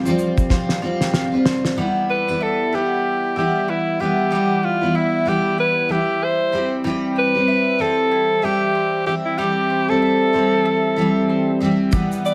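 Swung sixteenths in a relaxed 4/4 give this carefree, sunny acoustic pop excerpt its lilt, as a full-bodied, double-tracked steel-string acoustic guitar picks chords from Fsus2 through Em to Am7 and a round, double-strung mandolin ripples arpeggios in the background. A cloth-damped, thuddy drum kit with a fat snare, tight kick and shaker plays a fill from 0.5 seconds before dropping out, then returns at 11.9 seconds. A bright, punchy alto saxophone takes the melody from 2.1 seconds, forceful and up front, with vibrato and a smooth top, all set in light reverb.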